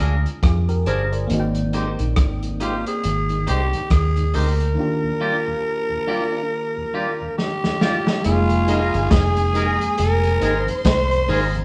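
Smooth and bittersweet, this lovers rock reggae excerpt, cut from a longer piece, moves at an unhurried 69 BPM in 4/4 with a swung sixteenth-note feel in F dorian, tuned slightly flat of standard pitch. A raspy, growling tenor saxophone carries the melody up front, while a dark, round, foam-muted fingered bass anchors the groove from the start, joined at 0.3 seconds by a crunchy breakbeat kit, saturated with a rolled-off top. A glassy, bell-like FM electric piano with chorus and a clean, scooped, twangy electric guitar playing stabs fill out the accompaniment, and a mellow tonewheel organ with key click and a slow rotary speaker slips in behind them at 1.6 seconds. The harmony moves through Bb7, Abmaj7 and Ebmaj9 before a drum fill leads into a new section at 8.2 seconds, where a lush, bowed string section enters on a second line over Fm11. The band sounds as if playing live together in a stone room with moderate reverb, captured on cassette tape.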